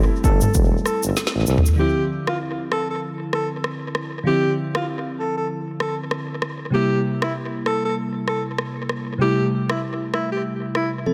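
A swung sixteenth-note afrobeats groove from an electronic afro-pop drum kit, with deep kick, woody snare, rim click, shaker and toms under tape echo, sets a smooth, hypnotic mood in this short cut from a longer piece, as a warm tuba with light vibrato holds the bass only until 1.6 s, a drum fill at 1.2 s precedes the move from Am7 to Dm9, a crystalline, sparkling FM electric piano with chorus and tape echo plays a fast-attack, decaying accompaniment, and a breathy alto saxophone with scooped notes, a smooth top and light vibrato carries the melody through an echo-heavy mix of light reverb and digital ambience.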